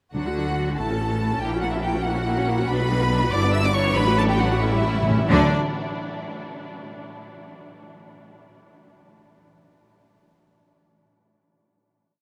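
A graceful, cheerful classical-period orchestral miniature in a lilting 6/8, where rich bowed violins sing the vibrato melody while a second, more distant violin line doubles the tune at the octave, violas rock a smooth two-note figure and hold sustained chords, lush cellos and intense, bright double basses carry the bass, and hard-mallet timpani strike single strokes before a fill at 4.6 s leads the slowing phrase to its final chord, all bathed in a huge, echoing reverb.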